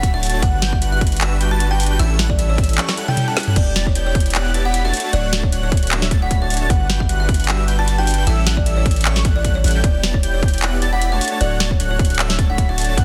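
A dense, heavily limited mix with little reverb frames this playful, lush future bass excerpt at 153 BPM in half-time D major, where a hollow, plucked kalimba melody and the high arpeggios of an airy, chorused, dreamy lead float over huge detuned supersaw chords cycling Gmaj7, A7, Em7 and Dmaj7 and a deep, sine-toned 808-style bass, all four pumping with the sidechain, while an up-front hard-clipped electronic kick and a trap kit of woody snare, metallic hats, claps, toms and crash drive the groove and play a drum fill at 2.8 seconds.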